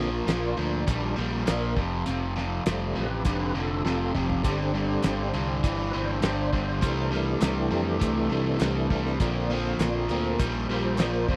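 On a straight 4/4 classic rock groove driven by a muffled, thuddy cloth-damped drum kit with a fat snare and a quick fill near 3.9 seconds, this swaggering clip sets a lightly overdriven tonewheel organ soloing through slow rotary swirl with audible key click over two warm, compressed overdriven electric guitar riffs, a bright, up-front picked bass, a shimmering octave-doubled twelve-string acoustic guitar fingerpicked with finger squeak in the background, and very quiet hollow group handclaps joining at 5.0 seconds, all captured in a dry, close 1970s-style studio sound with light reverb as the chords move from Bbadd9 through Fadd9, Gsus4 and C6.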